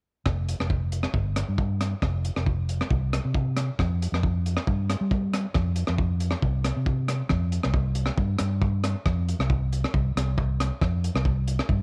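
A round, amped fingered electric bass sits up front in this carefree, joyful highlife guitar band excerpt at 136 BPM in straight 4/4, joined throughout by a gritty, saturated breakbeat drum kit with a tight kick, hi-hat and rim click and a rolled-off top, all in a dry studio room, with the music moving into a new section at 7.3 seconds.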